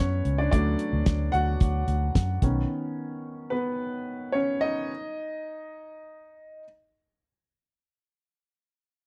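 Piano-driven pop in B major and 4/4, this anthemic, hopeful fragment of a longer piece moves at 94-111 BPM. An intimate concert grand with audible action noise and deep bass carries the accompaniment over a D chord alongside a dark, round, foam-muted electric bass, and a damped 70s drum kit with a fat snare and tight kick enters at 0.3 s. The harmony shifts to Badd9 at 2.4 s, and after the bass stops at 2.6 s the piano plays alone and slows from 2.7 s, all captured in a dry, close 1970s-style studio sound.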